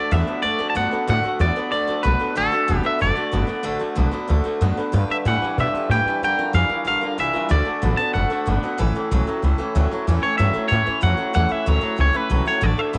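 A twangy, clean electric guitar carries the melody through tape echo over a full-bodied picked steel-string acoustic and a slightly broken-up, lo-fi riff from an electric guitar through a small old amp, joined at 0.1 s by a woody, dark pizzicato upright bass up front, in this retro, rowdy rock excerpt at 187 BPM in D major that moves from D to G, Gm7, back to D and then A, set in moderate spring reverb and studio ambience with a softened top end.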